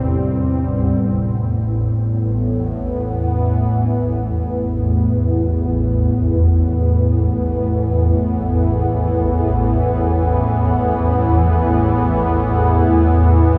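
In free time and A minor, this dark ambient drone excerpt feels desolate and cavernous, cut from a longer piece. A swarming drone sits up front from A1 to E2 for the full 13.6 seconds, tense and evolving, its detuned sine and triangle tones roughened by ring modulation and a granular grain, with built-in reverb and a phaser. Above it, a sweeping resonant pad holds sustained chords between A2 and C4, a bright, airy sawtooth sound with a noise layer, filter swell and chorus, also placed up front. For only the first 1.7 seconds, a bronze singing bowl struck with a wooden striker rings barely audibly in arpeggios, metallic and meditative with slow beating. A huge ambient reverb with a 9.0-second decay wraps the whole sound, giving the slow attacks and long releases a vast, hollow space.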